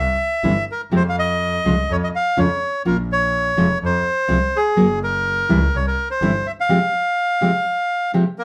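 Recorded live in one room with a wet studio reverb, this melancholic, passionate tango in F minor at 125 BPM, played rubato in 4/4, sets a reedy, up-front bandoneon melody over a fingerpicked classical nylon-string guitar entering at 0.4 seconds and a biting, bowed double bass with vibrato that drops out at 6.4 seconds, the harmony moving from C through Fm and Bbm to a closing Fmadd9.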